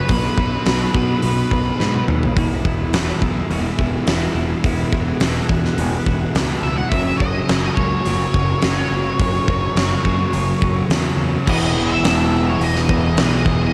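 Shoegaze-tinged dream pop rock at 106 BPM in E lydian, hazy and wistful, built on a thick, dark fuzz guitar with lush chorus, an overdriven semi-hollow guitar swathed in reverse reverb, a growling fingered bass with tube saturation, and a huge, up-front arena drum kit with a fat snare, punchy kick and bright cymbals, whose fill at 1.8 seconds leads into the Eadd9 chord. A distorted octave-fuzz lead sings its melody through tape echo at the start and again from 6.6 seconds, while a very quiet, vintage organ-string ensemble holds soft-attack chords behind it. At 11.5 seconds a double-tracked overdriven guitar slips in on an Emaj7, all carrying the dry, lo-fi grain of a home cassette recording.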